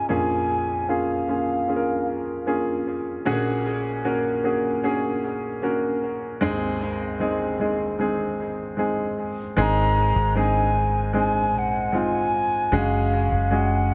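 A breathy, close-miked alto ocarina with a clay tone and vibrato opens alongside an up-front, natural-sounding baby grand piano, the ocarina falling silent at 2.1 seconds while the piano carries on through Bbm7, Gbadd9/Bb and Ab chords. This heartfelt, emotional pop ballad moves at a slow 76 BPM in a straight 4/4, with dub echo on both ocarina and piano and a moderate plate reverb giving the echo-heavy mix its spacious sound. At 9.6 seconds the ocarina returns and a dark, round, foam-muted fingered electric bass enters beneath it, leading toward a closing Gbsus2 chord.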